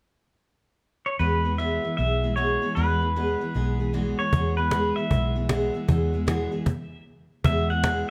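A clean, bright pedal steel guitar with fingerpicks, slide and volume swells carries the melody from 1.1 seconds in this sunny, heartfelt honky-tonk and classic country excerpt at 154 BPM with a swung feel in E major, joined almost at once by a full-bodied, picked jumbo acoustic guitar and a dark, round, foam-muted vintage electric bass, while a woody cajon with faint snares enters up front at 4.3 seconds before a brief stop at 6.7 seconds, all caught by close, detailed microphones with light reverb.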